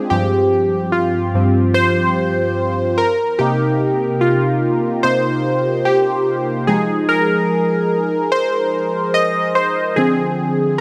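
Warm, detuned analog synth keys with a round sawtooth tone, fast attack, decaying notes, a filter sweep, chorus and phaser play alone and up front through this moody, longing slow R&B fragment in C minor at 73 BPM with a light 16th-note swing, moving through G7sus4, Cm7, Fm7 and Dm7b5 chords over about 10.8 seconds, bathed in a lush hall reverb.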